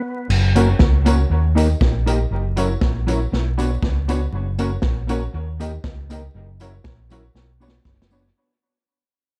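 Ska, cheerful and joyful, in which a round, amped fingered electric bass and a punchy vintage drum kit with dark cymbals sit up front, a clean, mellow electric guitar and a woody, slightly detuned upright piano playing stabs carry tape echo, a jingly tambourine lingers distantly in the background, small-room ambience and vinyl crackle colour the dark production, and the passage fades out gradually throughout, with a drum fill entering at 7.3 seconds.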